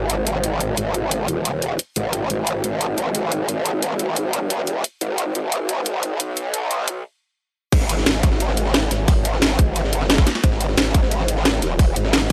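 Straight 4/4 drum and bass drives this dark, tense slice of technical drum and bass, cut from a longer piece. A growling, wobbling bass sits up front from the start, detuned and saturated with a formant-filtered bite, chorus, and sidechain pumping that makes it pulse. Beside it, an overdriven drum and bass kit builds tension with a cracking snare, bright hats, and crash cymbal. The build-up halts in a brief stop at 7.0 seconds, then the drop lands at 7.7 seconds. Here a tight, overdriven electronic kick pushes forward and a gritty, sampler-style breakbeat kit slips in behind, its high-tuned snare, hats, and ride thinned by high-pass filtering. The whole mix carries a digital ambience with a filtered, lossy sheen.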